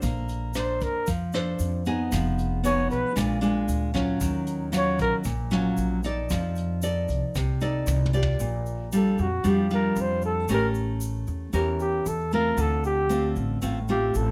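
Sophisticated and breezy, this bossa nova moves at 115 BPM in a straight 4/4 in Bb major, cut from a longer piece. Up front, a full-bodied nylon-string guitar fingerpicks the accompaniment in a classical manner through chords such as Bbmaj9, Ebm9 and A7b9, while a woody pizzicato upright bass with steel strings anchors the low end. A vintage brush drum kit with a punchy kick and a rolled-off top plays hi-hat, rim clicks and toms, rounding off its part with a fill just before it stops at 8.3 seconds. A grainy, bright tube shaker sits compressed and saturated in the background throughout. The mellow flugelhorn carries the jazz-style solo melody up front with vibrato and scooped notes, entering at 0.6 seconds, pausing, then returning at 9.0 seconds, all set in a light reverb.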